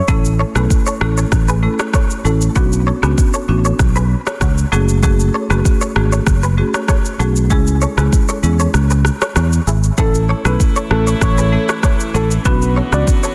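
A round, punchy fingered electric bass sits up front in this sunny, romantic afrobeats excerpt, cut from a longer piece and moving at a straight groove. Beside it, an electronic afro-pop drum kit with a deep kick, rim click and shaker carries tape-toned color and vintage 12-bit sampler grit, while a woody marimba played with medium mallets keeps up a mid-forward accompaniment throughout. A bright, twangy clean electric guitar, recorded direct and compressed, picks a riff through ensemble chorus and tape echo. The kick drops out from 8.7 seconds, and at 10.0 seconds a gentle, keys-like FM synth lead takes up the melody with chorus, vibrato and tape echo, as a distant, floating string section adds soft-attack bowed chords played sul tasto. Light reverb and a dense, heavily limited modern master round out the sound.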